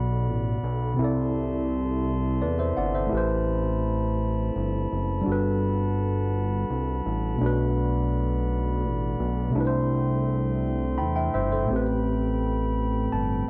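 A slow, straight 6/8 pulse at 56 BPM carries this sensual R&B piece, tuned to A4 = 436 Hz, where a fat, saturated analog bass with detuned sawtooth grit sits up front beside a worn, slightly out-of-tune tine electric piano played through a combo amp, while a glassy, ethereal glass harmonica holds beating chords in a boxy small room over a Bm7, C6, Am9, Gmaj9 cycle, captured in a dry, close 1970s-style studio sound, before the electric piano adds a brief fill at 12.8 seconds.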